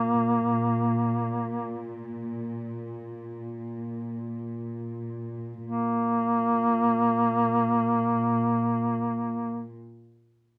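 In free time, with a slowing pulse through the opening 5.6 seconds, this brief cut from a longer Caucasian folk lament unfolds with a mournful, longing mood. A duduk carries the melody around Bb3 from start to finish, its warm, folk-style tone marked by vibrato and scooped notes; it sits up front as the solo voice yet carries a distant, roomy quality. Beneath it, a bowed cello section holds a dark drone around Bb2, played sul tasto with a soft attack and light vibrato, giving the low layer an intimate, close feel. The music shifts into a new section at 5.6 seconds and runs to about 9.5 seconds, with both parts playing together throughout. The overall sound is that of a dry, close 1970s-style studio recording with little reverb.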